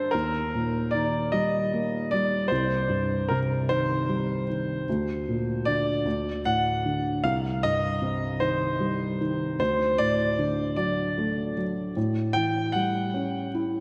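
A dark, intimate felt-muted upright piano and a bright, polished grand piano carrying the melody begin together, both up front, in this melancholic, dramatic six-eight pop ballad fragment, bathed in a dreamy mix soaked in lush hall reverb, with the grand falling silent at 13.5 seconds as the upright rings on to 13.8 seconds.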